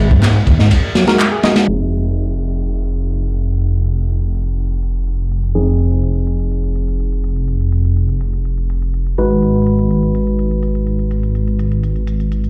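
Breakbeat at 124 BPM in F minor, swaggering and energetic, this short cut opens with a mellow, lightly overdriven tonewheel organ riff with slow rotary and 12-bit grit alongside a gritty, saturated acoustic break that both stop at 1.7 seconds, while a deep, rumbling detuned saw bass and crisp electronic house handclaps and hi-hats carry on under a filter sweep, joined from 1.1 seconds by worn, slightly out-of-tune electric piano stabs with delay, all set in a large studio reverb as if played on a big sound system in a bare room.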